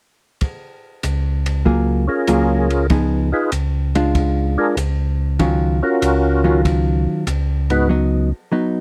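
A dry, close 1970s-style studio sound frames this short cut from a soulful, bluesy soul jazz organ trio with a swung 4/4 feel. A compact cocktail drum kit with a punchy kick, hi-hat and ride cymbal starts at 0.4 seconds, a round, mellow tonewheel organ carries the bass through a slow rotary speaker with key click, and a dark, clean hollow-body jazz guitar adds compressed, picked accompaniment. Up front from 2.1 seconds, a percussive tonewheel organ takes the melody with a lightly overdriven, full tone, chorus vibrato and slow rotary speaker, over changes moving from F#maj9 through A#7 and D#m9 to B.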